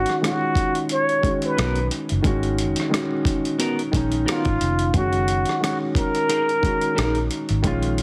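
An 89 BPM groove in 4/4 with a light sixteenth-note swing sets up this late-night, sultry neo-soul and R&B excerpt in G# dorian, moving from G#m7 to F#69 at 4.9 s. Underneath, a dusty sampler-style drum kit of hi-hat, thumpy kick and rim click sounds gritty and overdriven, with a compressed, small-room character, while a vintage fingered electric bass adds a dark, round, foam-muted low end. A concert grand piano sits up front with a warm tone, deep bass and short sustain as it carries the accompaniment. Leading the melody, a plunger-muted trumpet plays a jazz-style solo with a breathy, soft-attacked wah-wah tone, vibrato, a smooth top and a slapback echo. A clean, picked electric guitar enters at 1.6 s with a second line, and the trumpet drops out at 7.3 s. Light reverb and digital ambience surround the mix, which has a heavily compressed, radio-like sound.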